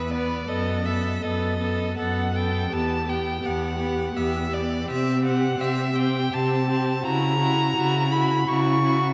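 Moving in a slow, rubato 3/4 at 83 BPM, this elegiac classical movement for string quartet in E minor unfolds as a short passage cut from a longer piece, its melancholic harmony passing from B7/F# through Em and C5 to F#7/C# over roughly 9.1 seconds. The first violin carries the melody high in its register, up front with a smooth, even tone and rich vibrato. Beneath it, the second violin sings an expressive second line with warm vibrato and gentle portamento, while the viola fills in the accompaniment with a focused sound. The cello anchors the bass, also up front, its rich, soft-edged notes colored by vibrato and expressive slides. All four players are bowed, solo voices heard in a vast, echoing cathedral whose long, wet reverb gives the ensemble a mournful, hovering glow.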